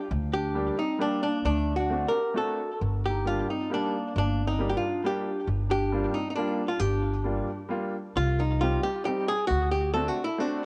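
A clean, compressed hollow-body archtop guitar, miked and sitting up front, carries the melody of this whirling, bittersweet musette waltz in G minor, colored by cassette tape and analog delay. A soft-attack clarinet sings a distant, classical-style second line through its own delay until 7.7 seconds, while a pizzicato steel-string upright bass and a brilliant, polished upright piano fill out the rubato 3/4 at 134 BPM. The harmony moves from Gm/D and D7 through Gm7 to Cm at 8.2 seconds, all set in light reverb and small-room ambience on a home cassette recording.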